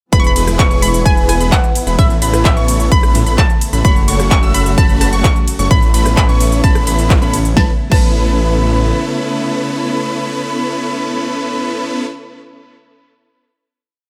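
The recording has a light reverb over a bright, punchy festival progressive house mix, a triumphant and euphoric piece in A major at 129 BPM in a straight 4/4. From the first moment a drop is in full swing, driven by an overdriven electronic kick up front in a four-on-the-floor pattern and a big-room dance kit of punchy snare, crisp programmed hats, claps, rim clicks, ride and crash, both bathed in studio reverb. A thick, menacing detuned saw bass with tube saturation follows the chord rhythm through E, Aadd9 and F#m, while a huge supersaw lead hammers out dotted-rhythm chords in close voicing, coloured by cassette tape and tape echo. Above it a hollow, bouncy square pluck with chorus carries the hook phrases, and a mellow plucky unison lead runs arpeggios an octave higher, with a filter sweep. Further back, a dark fingerpicked steel-string acoustic guitar holds chords with syncopated pushes and a distant chamber string section sustains an expressive bowed pad, both pumping with the sidechain. 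The drums stop at 8.1 seconds and the bass at 8.9 seconds, leaving the leads, guitar and strings to ring out a final chord from 7.6 to 11.3 seconds, the last of them fading by about 12.3 seconds.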